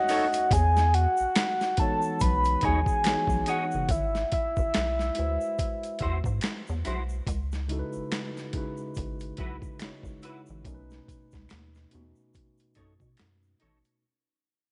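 R&B and neo-soul in a relaxed, smooth mood, this cut from a longer piece rides a swung sixteenth-note groove and fades out from 0.5 s onward. A soft, octave-layered synth lead carries the melody up front with a round, triangle-and-sine tone, a sub octave beneath it, chorus and vibrato, and it drops out at 6.8 s. A clean tine electric piano plays the accompaniment through its built-in speakers, while a fingered, dark electric guitar adds a second line treated with ensemble chorus. The boom bap sampler-style kit sits forward, compressed and pitched down, with a gritty, thumpy kick and a high-tuned snare alongside the hi-hat. A rubbery square-wave bass with wave-folded, resonant character, a filter pluck and a moving notch bounces up front, and a saturated tube shaker with group handclaps stays in the background. The harmony opens on a rootless B9 and moves through Emaj13, G#7alt and C#m11, all set in light digital ambience.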